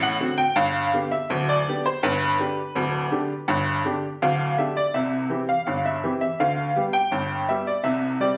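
A worn, woody upright piano plays alone from the first second, opening on D7 before settling into G and later moving to C around 4.9 seconds, in this cheerful, lively ragtime fragment at 83 BPM in a straight 2/4, its slightly detuned, short-sustained tone sitting up front with clear definition across a range from D1 to G5, caught on a phone in a room with a light club reverb.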